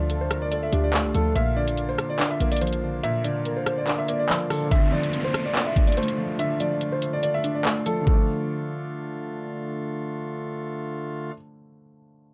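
Lightly reverberant and ominous, this half-time drill excerpt sets a mellow, tape-echoed dark grand piano melody over a soft felt-muted upright piano and nasal cornet-stop pipe organ chords, with a punchy short 808-style bass that stops at 3.0 s, a velvety synth lead in the background with chorus, phaser, tremolo and tape echo until 4.7 s, an up-front drill kit of knocking kick, bright hi-hats, handclaps and rim clicks, and an electronic downlifter entering at 4.7 s.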